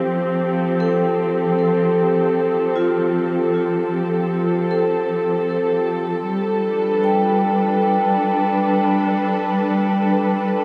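A muted studio string section, bowed con sordino with vibrato, holds veiled, dark sustained chords up front from the start, moving from Fadd9 to Gadd9 at 6.3 seconds. From 0.8 seconds a vibraphone struck with medium hard mallets, motor off, adds ringing, metallic arpeggios through a delay. This serene, luminous ambient fragment at 77 BPM sits in a huge reverb with an 8.9-second decay and a warm production.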